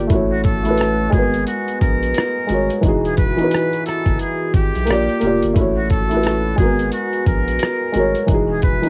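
A felt-muted upright piano and a muted trumpet open this reflective, nostalgic lo-fi hip hop excerpt together, with a round, deep sub bass beneath them and a dusty sampler-style drum kit arriving at 0.1 seconds. The piano sits up front with a mellow, intimate tone, moving through lush chords such as A6, G#m9 and Emaj9 in a gently swung feel. The trumpet carries the melody in a narrow range, its metal mute giving a buzzy, breathy, whispered jazz voice. The drums are compressed and gritty, with a thumpy kick, hi-hat and rim click, while the soft dub bass holds sustained low notes. A cassette-tape haze colours the trumpet, piano and drums, and vinyl crackle and a moderate booth ambience give the whole piece a homemade, vintage character.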